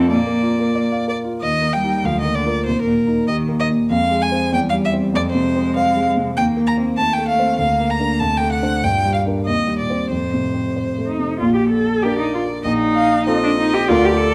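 A rich, smooth, even violin with vibrato carries the melody in this cheerful, lively classical-period piano trio movement, as a warm grand piano sits up front in accompaniment and a more distant, expressive cello adds a second line with soft attacks, vibrato and portamento, all three playing throughout this 14.3-second passage cut from a longer piece, captured by close, detailed microphones in a moderate recital hall reverb.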